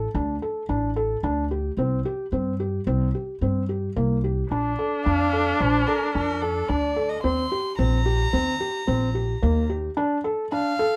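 Dark, lightly reverberant and intimate, this hypnotic, pensive contemporary chamber fragment in 5/4, tuned to A4 = 435 Hz and cut from a longer piece, sets close, mellow arpeggios on a felt-muted upright piano with audible action noise over a woody, thumpy pizzicato upright bass on gut strings that drops out at 9.9 s, while a single bowed viola enters at 4.5 s with expressive vibrato and portamento and a lone violin takes the melody from 5.1 s, rich, pure and floating with an airy sul tasto bow.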